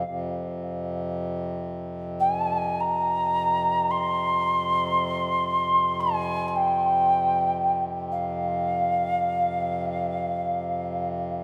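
Free of any pulse, this meditative world piece drifts in open time, unhurried and spacious. A breathy alto ocarina carries the melody from start to finish, its clay tone marked by a crisp, chiffy attack, a slightly unsteady vibrato and a distant yet up-front presence. Beneath it, a hand-pumped harmonium holds a low drone for the full 11.4 seconds, its reedy voice sounding airy and gently breathing. Both instruments sit inside a deep cathedral reverb with a 4.5-second tail that stretches each phrase into the surrounding space. The passage is cut from a longer piece, so it opens and closes mid-flow, leaving a calm, contemplative impression.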